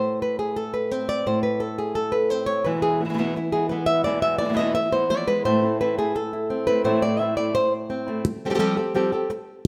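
Fiery and passionate, this short flamenco passage, cut from a longer piece, puts a fingerpicked nylon-string guitar up front with a boxy acoustic tone, carrying the melody throughout over Am, E and back to Am before shifting to Fadd9 at 8.2 seconds. A second, warm-toned flamenco guitar adds fingerpicked stabs from 2.7 to 8.2 seconds. A wet stone-room reverb surrounds the pair with a lingering sense of space.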